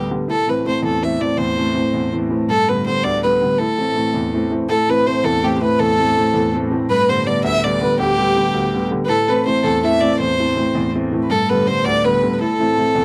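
A biting, intense fiddle with light vibrato and an airy bow leads the wild, driving melody of this Celtic jig in A minor at 109 BPM in 6/8, over a worn grand piano accompaniment moving between Am and G and a rich cello drone on A in the background, while a second, earthy fiddle line joins softly behind at 4.7 s, captured in a dry, close 1970s-style studio recording with moderate room ambience and cut from a longer piece.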